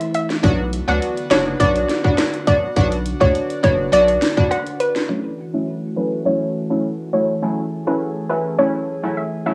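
Sultry and hypnotic, this short dancehall cut in F# minor moves at 103 BPM, with an airy, breathy pad holding sustained chords under chorus, sidechain pumping and cassette tape wear, while a soft, round pluck carries the melody through chorus and tape echo. A crisp, nasal wavetable chord stab sits up front in accompaniment, and a deep, dark analog bass supports the harmony from Bm until it stops at 4.2 seconds. A tight kick, sharp snare and rim click from the island pop drum kit drive the opening until 5.1 seconds, when the drums drop out and a filter sweep carries the F#m7 passage through a small-room cassette ambience with light reverb.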